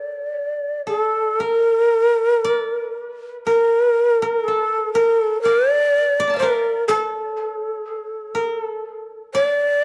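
Austere and solitary, this slow, rubato piece of Japanese traditional chamber music drifts at around 55-63 BPM in 4/4, set in D hirajoshi with the tuning pitched slightly low at A4 = 435 Hz. A breathy, hollow shakuhachi carries the melody up front, its end-blown bamboo tone marked by vibrato, tongued attacks, a chiff at the start of notes and lifted highs, with tape echo trailing behind it. Alongside it, a koto plucked with fingerpicks supplies a second line, its woody, dry timbre set lower in the mix and dressed in plate reverb. Both instruments play throughout, and a short opening passage gives way to a new section at 1.4 seconds that runs to 9.8 seconds. The whole recording sits in a small, wet room and carries the worn, warbling character of old cassette tape, with a warbly pitch drift that adds to its aged, lonely atmosphere, and it is cut from a longer piece.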